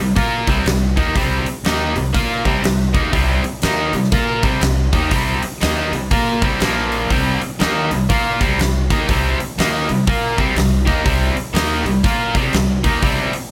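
A moderate club ambience gives this gritty, driving fragment of blues rock and southern rock a snug, roomy sound. A bright, distorted electric guitar, double-tracked, picked and up front, carries the riff from the first moment, moving between C5 and Bb5 power chords with a brief shift to Bb5 at 6.6 seconds before returning to C5. Underneath, an upright bass plays pizzicato on gut strings, giving a woody, dark and thumpy low end. A huge arena drum kit joins at 0.2 seconds, sitting up front with a hall sheen, a fat snare, a punchy kick and hi-hat. The trio plays in 4/4 with a swung eighth-note feel, and the cut from a longer piece runs to about 13.4 seconds.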